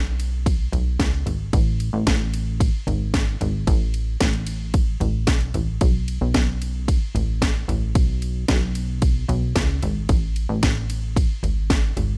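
A punchy, layered electronic house kit plays through this hopeful, uplifting pop fragment at 112 BPM in a straight 4/4, its kick, cracking snare, ride cymbal and toms sitting up front from 0.2 seconds. Beneath it, a plucky analog bass built from sawtooth, square and triangle waves with ring modulation and a filter pluck gives fast-attack, decaying notes between G#1 and C#2 that sound funky yet mellow and keep evolving. The dry sound carries little reverb across the full 12.2 seconds.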